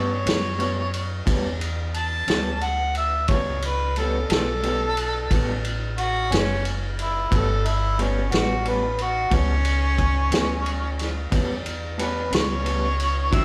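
This slow blues in 12/8 sits at 60 beats per minute in A mixolydian, with a gritty, laid-back mood, and it is a fragment cut from a longer piece. A mellow harmonica carries the melody as a jazz-style solo across the whole 13.4 seconds, its overdriven tone shaded with light vibrato and scooped notes. Beneath it, an electric guitar through a small old amp adds bright, twangy, slightly broken-up accompaniment, with tremolo and a compressed lo-fi edge. The pizzicato upright bass sounds woody, and a vintage drum kit joins at 0.3 seconds with a punchy kick, a medium-tuned snare and dark ride cymbal under a rolled-off top. The harmony rests on a single A9 chord, and the band plays live together in one room, wrapped in a moderate, large studio reverb.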